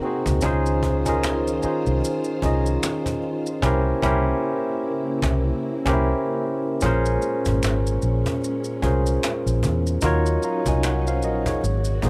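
Smooth and introspective, this neo-soul R&B excerpt with a lightly swung 16th feel sets an up-front tine electric piano, heard through its built-in speakers, over a silky, mellow string machine holding slow-attack chords with ensemble chorus. A round, punchy, foam-muted electric bass and the maracas and finger snaps enter at 0.3 seconds beside a snappy, saturated cajon, and the band hits an accent from 3.6 to 6.8 seconds as the harmony moves from Dbmaj9 through C7b9 to Bbm7 and Ebm7. A small room and dark production give the piece an intimate setting.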